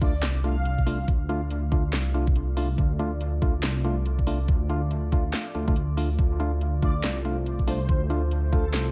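A faint sub drop and an impact open this dark, cavernous deep dubstep excerpt, as a breathy, flute-like synth lead sounds briefly before falling away at 1.0 seconds. From the start, a rumbling, detuned saw bass sits up front with tube saturation, carrying the low end under a knocking, tape-warm electronic kick and a garage kit of cracking snare, metallic hats and handclaps, all in a swung, half-time feel. Hollow, organ-like stabs with a noise layer punctuate the groove, colored by chorus and dub echo. At 1.3 seconds a deep, moody pad fades in behind everything, holding sustained chords with a slow attack and its own reverb. The soft lead returns at 6.8 seconds with tremolo, vibrato and dub echo, floating over a D minor backdrop in a lightly reverberant digital space.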